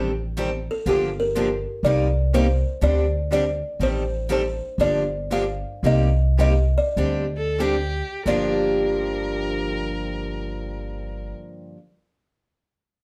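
Fiery yet bittersweet, this short cut from a longer acoustic string swing piece in G minor moves with a swung 4/4 between 86 and 123 BPM, slowing from 3.8 to 8.3 seconds, as bright picked archtop and boxy parlour steel-string guitars comp alongside a woody, thumpy gut-string upright bass up front, a dark, buzzing kalimba carries the melody from 0.7 seconds, and an expressive bowed violin with vibrato and portamento adds a second line from 7.4 seconds, all set back in a wet studio room.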